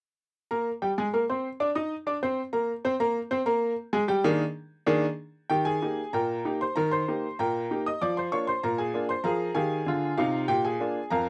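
Ragtime piano in Eb major at 96 BPM in a straight 2/4, this playful, lively cut from a longer piece features a solo upright piano, brilliant, woody and slightly detuned with audible action noise and long sustain, playing up front from 0.5 to 11.3 seconds across a range from F2 to Eb6 over Eb and Bb7 chords, captured in a dry, close 1970s-style studio sound with light reverb, tuned to A4 = 438 Hz.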